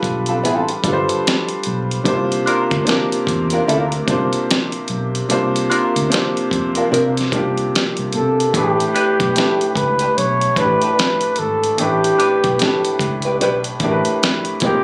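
A relaxed, swung 74 BPM groove in 4/4 rides on a dusty, sampler-style soul drum kit with a thumpy kick, fat snare and hi-hat, under a round, foam-muted fingered electric bass and a clear baby grand piano spelling out smooth neo-soul R&B changes from G9sus4 to C9sus4 and on to A9sus4 at 8.5 seconds. A dark, clean hollow-body jazz guitar with wah plays a picked second line from 0.3 seconds, and after a brief opening breath the flugelhorn returns at 8.2 seconds with a whispered, intimate melody carrying light vibrato and a slapback echo. Captured on a phone in a club room with light reverb, this short excerpt from a longer piece keeps a smooth, laid-back mood throughout.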